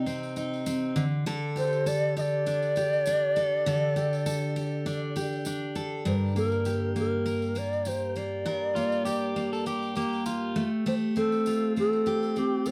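Wistful and tender, this acoustic pop excerpt moves at 100 BPM in 4/4 with a light sixteenth-note swing, set in G minor and tuned slightly below standard pitch. An airy, mellow shakuhachi carries the melody between G4 and Eb5, its crisp, chiffy attack and vibrato softened by rolled-off highs. Beneath it, a picked steel-string jumbo acoustic guitar sits up front with a bright, full-bodied tone from fresh strings, while a jingly tambourine stays in the background with a live-room feel. The harmony opens on Cm and Dsus4 before settling on Gm at 6.1 seconds and closing toward Fadd9/A. From 8.8 to 10.7 seconds, an electric guitar at the edge of break-up adds a brief second line between F4 and A4, slightly gritty and placed up front. Light reverb and a dark production give the whole piece an intimate, dusky glow.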